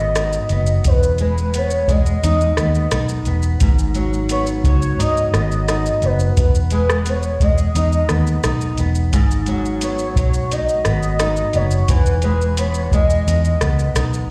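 A velvety, wave-folded synth lead carries the melody from the first moment of this hazy, mellow indie and bedroom pop excerpt at 87 BPM. Lush chorus and slapback echo wrap the lead, while a fingerpicked flamenco guitar adds chorus, vibrato effect and slapback echo of its own over a dark, foam-muted electric bass sitting up front. A soft vintage rhythm box enters at 0.2 s with a deep kick, metallic hats, rim click and shaker as the chords move between G#m7 and Emaj7 in a straight 4/4, all heard as a live gig through the venue's PA with light recital-hall reverb.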